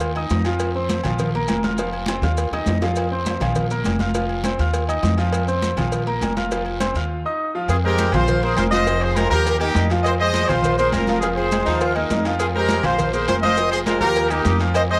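A moderate spring reverb gives this fiery, passionate salsa excerpt a lively ring, with a bright, polished concert grand piano up front playing accompaniment with long sustain and deep bass. Beneath it, a woody, thumpy upright bass plucked on steel strings sits dark and forward, while a crowd of acoustic percussion fills the background: ringing high-tuned congas struck with hard hands, metal-shelled agogo bells and timbales, a raspy guiro, grainy maracas, and a very quiet pair of round, low-tuned cowbell and bongos. A drum fill at 2.1 seconds punctuates the opening stretch, where the harmony circles through open, suspended chords. At 7.7 seconds a clear horn section takes the melody up front, its light vibrato and loose ensemble playing adding heat as the chords turn to F minor colours. Briefly at 11.7 seconds a tight saxophone section with vibrato slips in behind with a short second line.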